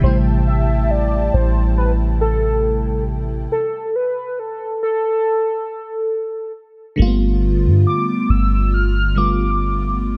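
A slow 69 BPM groove in 4/4 with a light sixteenth-note swing carries this longing, moody R&B fragment. A deep, round 808-style bass sits up front beneath a lush, dreamy FM electric piano, touched with chorus and phaser, while a smooth analog pad holds mellow chords on Am7 until 3.5 s, when the chords give way to a stop that lasts until 7.0 s. Over it all a velvety, warbling vintage synth lead sings the melody in a high register with vibrato, chorus and delay, and the harmony settles onto G9 in a closing section, all in a dry, close sound.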